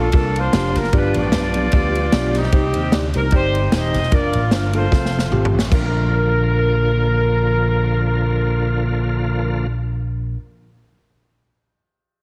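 A swinging 4/4 groove at 151 BPM drives this reverent, jubilant uptempo gospel excerpt in Bb major, where an up-front acoustic big-band drum kit with punchy kick and medium-tuned snare plays from the start and adds a fill from 4.9 s before stopping at 5.8 s, a bright, amped slap bass holds the low end, a mellow, soft-attacked vintage horn section carries the melody with light vibrato, a clean tine electric piano accompanies, and a full, shouting tonewheel organ sustains chords in the background through a slow rotary speaker and chorus vibrato, all in a light reverb with a heavily compressed radio sound.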